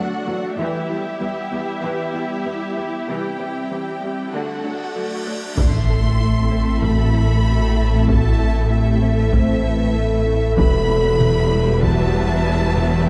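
The excerpt opens on a brooding, futuristic blend of orchestra and electronics at 96 BPM, with a hollow, flute-like pad holding chords under a tine-like synth pluck whose arpeggios carry chorus and tape echo. Bowed strings fill in around them: a softly voiced violin section on a second line, violas in the background, and a focused cello section anchoring the bass. A filter sweep drives the build-up while the chords move from D through Em and C/E, and a huge, dark cymbal swell rises from 4.9 s into an impact at 5.6 s. There the music shifts to Am, and a lush, vibrato-rich violin melody enters high above, with a clean sine sub bass, distant double basses and a very quiet, band-limited taiko ensemble struck with hard sticks. A dark, roomy French horn section adds sustained chords from 6.8 s, and the harmony later settles on Emadd9 at 10.6 s, all set in a moderate scoring-stage reverb with a dark, warm production.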